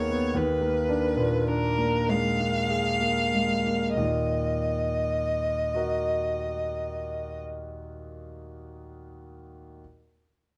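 In a rubato 6/8 with the dotted-quarter pulse drifting between 30 and 42 BPM, this elegiac classical fragment for violin and grand piano eases into a slowdown across its first 4 seconds. Cut from a longer romantic duo in Eb minor, it carries a melancholic mood. A single bowed violin sings the melody between Bb4 and F5, its rich, focused tone shaded with vibrato and placed up front. The concert grand supports it from Eb2 to Eb5, bright and brilliant with a deep bass and long sustain. The harmony rests on a Bb7 over an Eb bass before settling onto Eb minor at 4.0 seconds as a second phrase begins; the violin stops at 7.4 seconds, leaving the piano to ring on until 9.8 seconds. A moderate large-studio reverb and a dark production lend the whole a sombre, enveloping glow.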